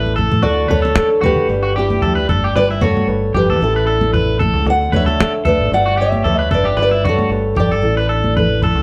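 A dark, fingerpicked steel-string acoustic guitar sits up front carrying the melody, finger squeaks and all, in this carefree, danceable highlife guitar band excerpt at 114 BPM in D major, with a lightly swung sixteenth-note feel. A brief fill opens, and bright, high-tuned congas played with hard hands enter at 0.1 seconds. Beneath them, a warm fingered electric bass, a twangy, slightly broken-up electric guitar playing arpeggios, and a thumb-plucked flamenco guitar in the background cycle twice through D, G, Em/G and Asus4, all heard as a live band in one room with a lush large-studio reverb.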